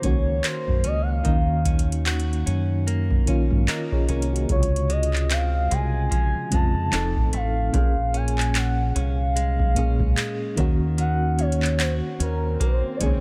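The sound is dry and close, with barely any reverb, in this sensual, late-night slice of contemporary R&B with a swung sixteenth-note feel. A booming analog drum machine sits up front, its deep kick, metallic hi-hat and handclaps carrying the sound of a small room, while a dark, round fingered bass punches alongside it. An FM electric piano with tremolo supplies full-bodied chords with a fast attack and a faint noise layer, adding a brief fill from 3.3 to 4.5 seconds. Beneath it, a clean, compressed electric guitar, recorded direct, picks arpeggios lower in the mix. Over them a smooth lead of sawtooth, sine and triangle tones glides between notes with portamento, vibrato, chorus and tape echo, its soft attack letting each note sustain. The harmony moves through Ebm7, Dbmaj7, F7 and Bbm7, and a very quiet electronic swell surfaces at 12.5 seconds just before the cut.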